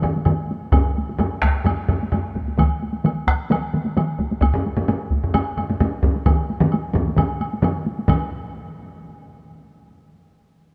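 Layered taiko drums dominate this powerful, driving piece of traditional taiko ensemble music, a short cut from a longer performance in straight 4/4. Four taiko parts stack up: one struck with heavy sticks sounds close and dry, another played with hard sticks sits up front in a live room, a third with heavy sticks is up front in a small room, and a fourth, also with heavy sticks, enters at 0.7 s as the most forceful voice in the mix. A woody woodblock sounds in a live room, adding its acoustic tone beneath the booming drums. The whole ensemble is set in a moderate but huge ambient reverb with a long 4.4-second decay, giving the acoustic drums a vast, resonant space. The drumming holds its weight from the opening moment to around 8.5 s, with the piece shifting into a brief new passage just after 8.1 s.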